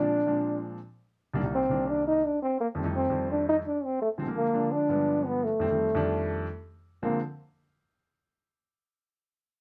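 Set in 4/4 at a brisk 169 BPM with a straight feel, this short jazz fragment, cut from a longer piece, feels lively and danceable. A trombone with a bucket mute carries the melody as the solo voice, its veiled, mellow tone shaded with vibrato and scooped notes as it moves between A3 and Eb4. Beneath it, a warm grand piano supplies accompaniment from C2 up to Eb4, its notes short in sustain and sitting close, though a little lower in level than the horn. The harmony runs from Bb9 through Cm7, F9, Bb7, G7b9 and back to F9, arriving at Dm7b5 at 7.0 seconds just as a new passage begins. Both instruments play together until 7.2 seconds, wrapped in a light reverb that gives the muted trombone a roomy quality.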